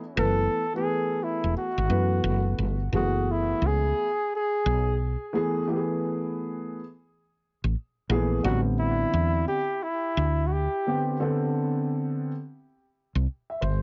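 A swung sixteenth-note hip hop groove at 87 BPM sets a nocturnal, cool mood in this cut from a longer piece, as a close-miked flugelhorn carries a jazz-style melody with vibrato through analog delay until 11.1 seconds, a dark, boxy concert grand with cassette-tape coloring accompanies on chords moving from F#m11 to Am11 at 8.4 seconds, and a round, woody fretless electric bass sits up front, the whole captured in a snug booth on a muffled home cassette recording.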